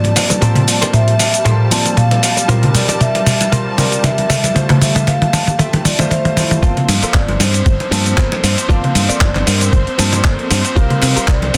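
Nu-disco excerpt at 116 BPM in G dorian, sleek and groovy with a light 16th-note swing, where a ringing vibraphone with soft mallets carries the delayed melody over a dark, intimate grand piano with audible action noise, lush pumping strings in the background, a bright chorused clean guitar riff, thin-skinned congas, and a gritty, tape-toned sampler drum kit up front alongside a thumpy kick. It builds through a drum fill and guitar fill until a punchy, foam-muted fingered bass enters at the drop at 6.6 seconds, with the harmony moving through Gm11, C7sus4 and Fmaj7 chords.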